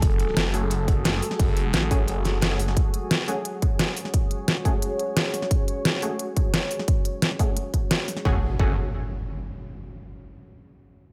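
Aggressive and mechanical, this dark technical drum and bass excerpt at 175 BPM in F# minor drives a punchy, up-front electronic kick and a dubstep kit with deep snare and crisp hats under a moody sustained pad, while a swirling phased saw bass growls until 2.8 s alongside a gritty, very quiet breakbeat kit, a bold orchestra-hit-like synth stab with tape echo rides a filter sweep from 0.5 s, and the bass returns with an impact at 8.3 s.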